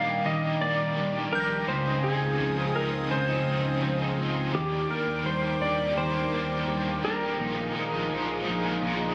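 Ethereal and blissful, this dream pop excerpt sets a clean lap steel guitar's sliding, compressed melody with volume swells and delay over a gently broken-up electric guitar playing up-front arpeggios through analog chorus and delay. An overdriven electric guitar with tremolo and ensemble chorus picks out an accompaniment, while a smooth detuned sawtooth pad and a thick, saturated sub bass sustain underneath the Ebmaj7, Dbmaj9 and Bb7sus4 chords, and a pure, warbling FM synth bell glints briefly in the background from 1.4 to 2.0 seconds. Captured on a phone in the room, the sound carries studio ambience, light reverb and compression.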